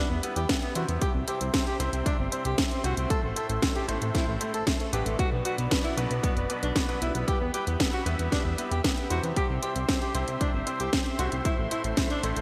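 Bright 1980s-style digital production in a lush hall carries this bittersweet, melodramatic Italo disco excerpt at 115 BPM in E minor, where a breathy, intimate alto saxophone sings the melody through delay and shimmer reverb over a detuned, warbling analog pad, brilliant baby grand piano stabs in the background, a glossy chorused synth bass with tube saturation, and an overdriven house drum kit with a cracking gated snare and punchy electronic kick that enters at 0.5 seconds.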